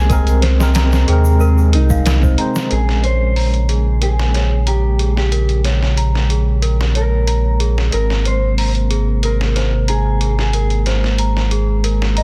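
A deep, round sub bass sits up front in this dark, cinematic trip hop excerpt at 92 BPM in Bb minor, beneath a muffled, pitched-down sampler-style drum kit with a thumpy kick that enters at 0.1 s, a clean, fingered electric guitar melody with tape echo, a barky tine electric piano in the background, and a warbling, lo-fi pad and a slightly out-of-tune, bell-like celesta that both take filter sweeps from 2.7 s, while a distant egg shaker plays only until 2.7 s, all in a dense, heavily limited master.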